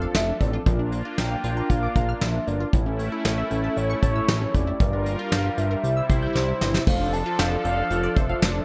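A steady, straight 4/4 groove at 116 BPM comes from a soft brush drum kit with a punchy kick and fat snare, sitting up front in gated reverb, with a drum fill from 6.4 to 6.9 s leading into a new section. This upbeat, nostalgic synth-pop excerpt in F major is underpinned by a thick, nasal, saturated analog bass. Above it, mellow, dark synth brass and a bold, vintage-sounding brassy pad hold chords, lush unison pluck arpeggios shimmer in the background through delay, and a round, horn-like lead with vibrato carries the melody over a progression that moves from F6 through Bb, A, Gm7 and C before returning to F6.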